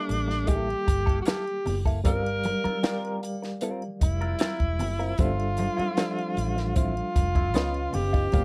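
A breathy, whispered tenor saxophone with slapback echo carries the melody up front in this silky, cinematic slice of lush 1970s-style soul at 76 BPM in G dorian, over a barky, lightly overdriven electric piano with fast tremolo, a dark semi-hollow guitar riff through wah, a round foam-muted bass, a compact cocktail kit with a punchy kick and a high-tuned snare, and ringing congas and shimmering triangle in the background, all captured in a dry, close studio sound.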